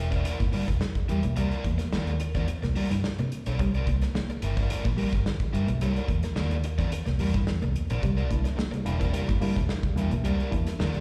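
Funky and energetic, this short cut from a longer funk piece moves at 108 BPM in a straight 4/4, sitting on a single C9 chord in C mixolydian. A warm soul drum kit of hi-hat, kick and snare sits up front with a tight kick, a medium-tuned snare and a rolled-off top. Beside it, a vintage fingered electric bass, dark, round and foam-muted, anchors the low end from the first moment. An overdriven, picked semi-hollow guitar carries the accompaniment with slapback echo, while a clean, fingered electric guitar plays a low riff in the background with subtle chorus. At 8.0 s a worn, barky tine electric piano, slightly out of tune and lightly overdriven through a combo amp, adds stabs with its own slapback echo, and the whole band is heard as a live gig through the venue's PA in a small room with recital hall reverb.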